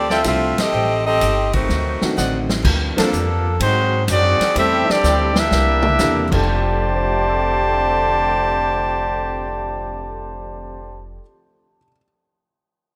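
A bright, tight saxophone section opens this joyful, brassy big band swing excerpt in F major at 126 BPM, carrying the melody up front with light vibrato for its first 2.2 seconds over a woody, thumpy pizzicato upright bass and a very quiet picked steel-string acoustic guitar with fresh strings and a hint of finger squeak. A clear trumpet section adds background stabs early on, and the swinging drum kit, with its punchy kick and medium-tuned snare in a big, natural room, marks band accents and drum fills before dropping out at 6.4 seconds. From 1.5 seconds a soft-attacked trombone section carries a second line in the background. At 3.0 seconds a smooth-topped trumpet section takes over the melody up front. A grand piano with short sustain sits behind the horns through the close, while the harmony moves from F69 through Am7b5, D7b9, Gm11, Ab7, Am7 and C13 before returning to F69. The rough demo mix carries light studio reverb.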